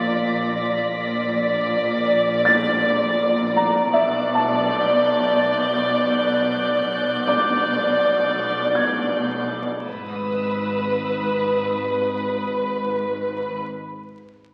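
The excerpt opens on an ominous, uneasy suspense film cue at 81 BPM, where a lush, up-front section of muted violins carries the melody with vibrato over veiled cellos and soft-edged double basses, while a clear, boxy baby grand and high, hushed chamber violins add texture until the piano drops out at 9.9 seconds and the harmony shifts from A# through Bm7 to G#m, all bathed in a concert-hall reverb and the crackle of a very old 78 rpm record.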